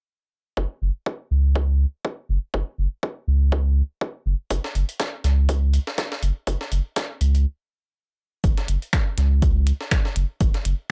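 A swung sixteenth-note groove drives this hypnotic, quirky minimal techno excerpt, where a punchy, tape-warm analog kick and a deep, thick sine sub bass, saturated and pumping, sit up front. A compressed sampler-style breakbeat kit adds hi-hats and a high-tuned snare from 4.5 seconds, a brief stop at 7.5 seconds gives way to a new section, and a clicky, overdriven minimal kit of finger snaps and hi-hats joins at 8.6 seconds, all in a dry, gritty hardware sound.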